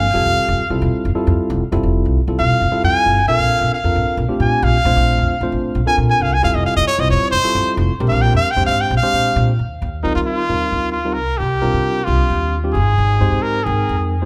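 Electric jazz fusion in 7/8 at a brisk 267 BPM counted in eighths, this soaring, sunny cut from a longer piece sits in Bb lydian and moves through chords like Fmaj9, Bbmaj9, Eb69 and Abmaj7. A brilliant, up-front trumpet with tape echo solos from the start until 9.6 seconds, singing with vibrato and scooped notes in a jazz style between Eb4 and Ab5. A clean tine electric piano comps beneath it, while a dark, woody pizzicato upright bass with steel strings anchors the low end, all captured as a band playing live in one room with light reverb.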